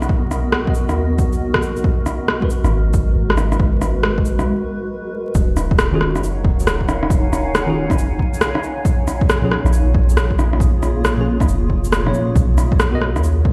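Vinyl crackle and large studio reverb, heard through a big sound system in a bare room, surround this wistful, ghostly future garage excerpt, where a punchy, layered electronic kick and an up-front, tape-warm rim click and shaker drive a swung groove over a round, dark 808-style bass and a blurred, granular cloud pad that both pump with the sidechain, while a worn, slightly out-of-tune tine electric piano, filtered and trailed by dub echo, drifts in at 0.7 s and returns at 5.9 s after a brief break at 4.5 s.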